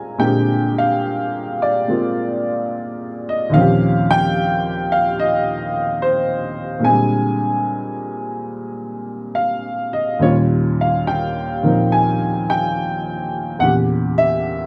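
Sophisticated and relaxed, this short solo jazz piece is cut from a longer work and drifts at an unhurried swing with a loose, rubato feel. A lone upright piano sits up front, its tone woody and boxy with long sustain, moving between rich thirteenth chords before landing on a diminished chord near 13.6 seconds. Moderate studio reverb and a dark production give the room a soft glow.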